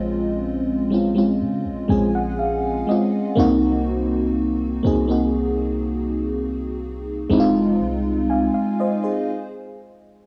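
A dreamy, detuned FM electric piano with a soft pad layer sits up front in this sensual, longing contemporary R&B excerpt at 61 BPM in Bb minor, its warbling, chorused, cassette-tinged tone adding a fill at 1.4 seconds over Bbm7 before the harmony moves to Cm7b5 and Fm7, while a deep, boomy 808-style bass anchors the bottom, all bathed in lush hall reverb before a stop at 9.3 seconds.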